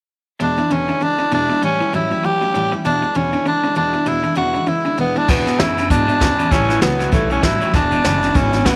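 A raspy, growling tenor saxophone sits up front and carries the melody in this retro, rowdy rockabilly excerpt, its gritty tone softened by a smooth top and touches of vibrato. It swings at 196 BPM in 4/4 over an E7 to A7 progression in E mixolydian, backed from the start by a full-bodied jumbo acoustic guitar picking the accompaniment and a twangy, slightly broken-up electric guitar through a small old amp playing a low, lo-fi riff. At 5.3 seconds the second section begins as a woody upright bass on gut strings enters with thumpy pizzicato lines, joined by a jazz kit played with brushes. The kit sits up front with a boomy kick, a high-tuned snare, hi-hat and dark crash cymbals in a small-room sound. Light reverb surrounds the whole, and the clip is cut from a longer piece, ending at 8.8 seconds.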